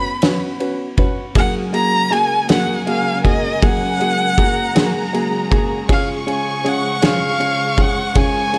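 An expressive solo violin, bowed with vibrato and portamento, carries the melody up front in this tender, heartfelt six-eight pop ballad in F# major at 53 BPM, over a woody, vintage upright piano, a clean, compressed twelve-string electric guitar picking arpeggios in the background, and a loose, roomy acoustic drum kit with a punchy kick, fat snare and dark ride cymbal entering at 0.2 s, while a lush, smooth violin section adds a second line and a clear, focused string section holds sustained chords from 1.4 s, under light reverb as the harmony moves from Bsus2 to F#add9 to C#.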